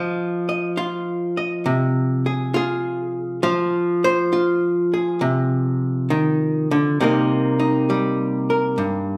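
At 67 BPM in 4/4, this solo jazz passage pairs a 67% swing on the eighth notes with a loose rubato, giving it a swinging yet moody feel. A single archtop guitar, miked and amplified, carries everything from 0.0 to 9.2 seconds, ranging from G2 up to Eb5. Its tone is dark and clean, picked and compressed, with the hollow-body character sitting up front in the mix. The harmony rests on Fm7 before moving to Cm7 at 7.0 seconds. A large studio reverb with a 0.9-second decay places the listener further back in the room, lending the brief cut from a longer piece a spacious, wet glow.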